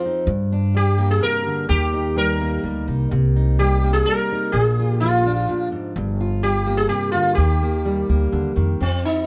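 Haunting and reflective, this short excerpt from a longer piece features a small acoustic folk band moving in a straight 3/4 at 127 BPM. A fingerpicked steel-string acoustic guitar opens at 0.0 seconds with a full-bodied jumbo tone, providing the accompaniment from F2 to F4. An upright bass joins at 0.3 seconds, its pizzicato line woody and growly, sitting low between G1 and G2 and standing a little louder than the other parts. At 0.8 seconds a sitar takes the melody between C4 and Bb4, bright and buzzing, with sympathetic strings adding a shimmering halo to its plectrum-plucked notes. The harmony circles through Gm, Eb, Cm7, Bb and Gm7 before returning to Eb, all three instruments placed up front in a light reverb.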